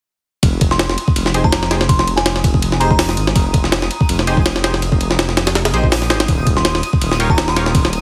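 Heavily compressed with a radio-like sheen, light reverb and a digital ambience, this excerpt of dark, nostalgic drum and bass with jungle roots moves at 164 BPM in F minor, its sixteenths carrying a slight swing. A sampler-style jungle kit sits up front from 0.4 seconds, pitched up and gritty, with a thumpy kick, a high-tuned snare, hi-hat and ride cymbal, all tape-tinged and given studio reverb. Alongside it a thick, menacing detuned saw bass holds the low end between Eb1 and Bb1, its beating sawtooth tone sustained and equally forward. A glassy, crystalline FM bell carries the melody in the background, warbling with chorus, vintage 12-bit sampler grit and dub echo, sounding first at 0.7 seconds and returning near the close. Nasal, band-passed chord stabs with a filter-pluck bite, chorus and dub echo trace the harmony from Fm9 to Eb7 at 6.3 seconds, while a twinkling granular texture with an octave-up shimmer hangs high on Eb6 in the background from 1.0 seconds.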